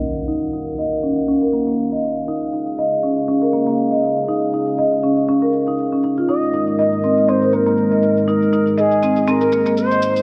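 Drenched in a lush concert-hall reverb, this earthy, moody stretch of afro house sets woody, up-front marimba arpeggios under a long filter sweep and a faint electronic shaker, all over a deep, detuned analog pad, before a smooth, expressive sawtooth lead with vibrato and gliding portamento enters at 6.3 seconds.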